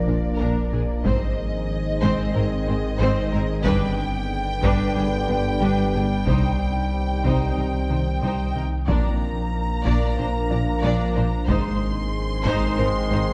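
A deep, full sine sub bass with an octave anchors this brooding, relentless hybrid orchestral and electronic film cue, joined from 1.0 s by a close, dry taiko ensemble struck with hard sticks, just after a barely audible electronic sub drop marks the opening impact. Lush, vibrato-rich violins carry the smooth melody over an expressive second violin line and even violas, while woody, distant cellos and double basses, mellow French horns and tight, vintage-tinged trombones hold the low harmony. An ethereal, warbling FM pad with chorus and its own reverb sits behind a very quiet, crystalline wavetable pluck playing detuned arpeggios, all set in a dark scoring-stage reverb.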